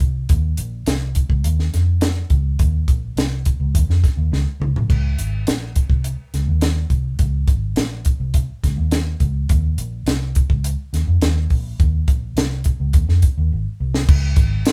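Joyful and warm, this short uptempo soul passage in a 1960s style moves at 104 BPM in a straight 4/4, tuned slightly sharp to A4 = 441 Hz. Only two parts play, both up front: a compact cocktail drum kit and a vintage muted fingered electric bass, running together from the start for about 14.6 seconds. The acoustic kit sounds dry, with dark cymbals, a high-tuned snare and a punchy kick alongside hi-hat, crash and toms. The bass sits low between Ab1 and F2, its amped, foam-muted tone dark, round and punchy. Drum fills arrive at 4.3 and 13.5 seconds, and a moderate studio reverb gives the feel of a band playing live together in one space.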